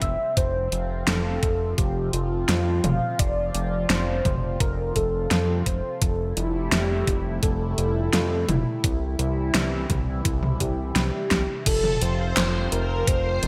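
A fat, detuned sawtooth bass sits up front in this uplifting, romantic synthwave piece, driven by a thumpy, overdriven electronic kick and a layered pop kit with a fat snare, hi-hat, handclaps, toms and crash cymbal bathed in gated reverb. Above them, a velvety synth lead carries the melody with chorus, vibrato and digital delay, while a swirling phased pad holds sustained chords with sidechain pumping. After a drum fill at 11.3 seconds, a shimmering string machine of violins enters at 11.7 seconds, all within a bright 1980s-style digital production with plate reverb.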